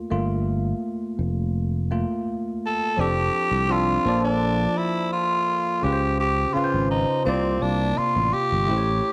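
This lush 1970s-style soul excerpt has a smooth, unhurried feel. A bell-like tine electric piano opens the piece at 0.0 seconds, its clean, bright tone colored by a phaser, and a fingered electric bass joins almost at once with a dark, round, punchy tone thickened by transformer saturation. Near 2.7 seconds a growling tenor saxophone takes the lead, its raspy, gritty voice carrying a light vibrato in a clear pop style. The harmony moves from a minor seventh chord through sixth and major seventh colors before settling on a suspended ninth. A moderate plate reverb lends the mix a glossy sheen, with the saxophone, piano and bass all sitting up front.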